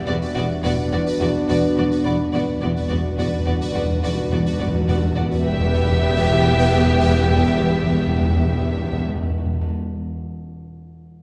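A wet scoring-stage reverb surrounds this eerie, uneasy excerpt of a suspense film score in E minor, moving at 106 BPM in a straight 5/4. Close, dry timpani with hard mallets sit up front and fill on E2 beneath bowed string sections: violins carry a smooth melody and a second line, lush violas and very quiet cellos supply accompaniment and bass, a rich double bass section anchors the bottom, and a cello riff runs until 5.3 seconds. Meanwhile a pulsing, detuned gated texture with chorus and a French horn section in the background hold sustained chords, a delicate, bell-like celesta glints faintly from 2.1 seconds, and the harmony moves from Bm/E to Em at 5.5 seconds.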